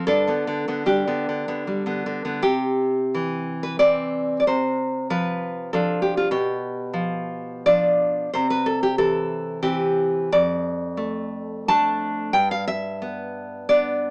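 In a rubato 3/4 that moves between 73 and 100 BPM, this tender romantic passage for solo classical guitar features a fingerpicked nylon-string guitar, deep-toned and up front with light reverb and a small-speaker sound, spanning F2 to A5 in C major as it opens on G, turns at 2.4 seconds to a progression through C, Dm7/C, G7/B, C and Dm/F, and returns to G at 12.3 seconds.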